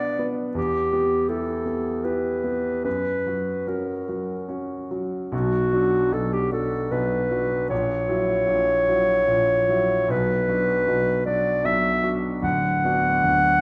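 Yearning and solemn, this romantic classical fragment, cut from a longer piece, sets a warm, up-front solo clarinet melody over a clear concert grand piano with deep bass and long sustain, both carried by a reverberant recital hall, moving in a rubato 3/4 at about 71-82 BPM in B minor, with a new passage from 5.3 s passing through F#7/A# before settling on Bm/D.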